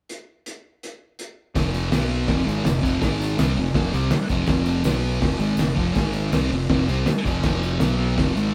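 A straight, driving 4/4 beat from a cloth-damped, thuddy drum kit opens this swaggering, rowdy garage rock excerpt. The kit has a fat snare, tight kick and dark cymbals in a muffled, lo-fi small-room sound. At 1.6 seconds a thick, double-tracked fuzz guitar riff crashes in up front, grinding on F5, B5 and Ab5 power chords, while a growling, overdriven fingered bass adds bright grit underneath and a very quiet, jingly tambourine rattles in the background. The whole band sounds like it is playing live together in one room with light reverb.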